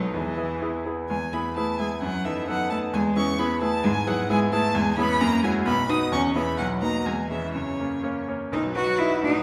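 Lively and cheerful, this quick classical-period movement for piano trio moves in 2/4 at roughly 122-133 BPM with a rubato feel, starting in E major and turning toward B major from 4.7 s. A rich, expressive violin carries the melody with vibrato and portamento, sounding distant, while a focused cello with a smooth top sings a second line beneath it, and a brilliant grand piano supplies the accompaniment, up front and intimate, its action noise audible. The trio is heard from further back in a reverberant recital hall, and the passage is cut from a longer piece, closing on B at 8.5 s.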